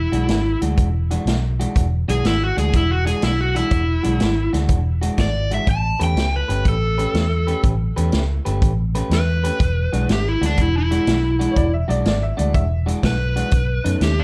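Soulful and gritty, this electric blues shuffle rolls along at 122 BPM in 4/4 with a swing on the eighth notes, sitting in E mixolydian and moving from E9 to A9 at 5.7 seconds, back to E9, then touching B9 at 13.5 seconds. An overdriven slide guitar carries the melody up front, its fingered slide lines ranging from D4 to A5. Beneath it, a muted fingered electric bass sounds dark and round, amped and foam-muted, sitting forward in the mix, while an electric guitar at the edge of break-up plays a compressed, picked riff with a slightly broken-up edge. A vintage acoustic drum kit in a natural studio room drives the groove with hi-hat, a punchy kick and a medium-tuned snare, its top end rolled off. Briefly, at 11.5 seconds, a worn, woody upright piano adds a boxy, slightly detuned second line with long sustain, and the dry sound of this short cut from a longer piece keeps every part close and direct.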